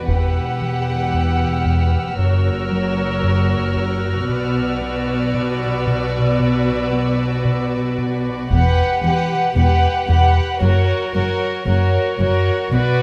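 A moderate scoring-stage reverb surrounds this tense, mysterious suspense cue, cut from a longer film score, where a pure, floating violin section carries the high melody over a close, intimate second violin line, sul tasto cellos and dark double basses. A round, deep analog bass with a fast attack plays a sustained, evolving riff beneath the strings, while a light-vibrato layer of chamber violins hovers very high until 7.9 s. Compressed, saturated taiko drums struck with heavy sticks land in two short bursts, at the opening and again at 8.5 s.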